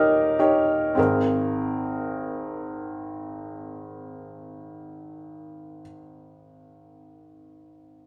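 The recording has the feel of a live take in one room, wrapped in a generous studio reverb that lingers for about 1.2 seconds. This brief pop fragment, cut from a longer piece, moves in free time with a tender, hopeful mood. Its only voice is a felt-muted upright piano playing accompaniment throughout its 8.1 seconds, spanning Ab1 to Db5. The piano sits up front with a soft, intimate tone, the thin felt giving it a mellow, muted quality, and the mechanical noise of its action is clearly audible. The harmony rests on Eb before settling at 1.0 seconds onto an Abadd9 chord, which carries the short section that follows.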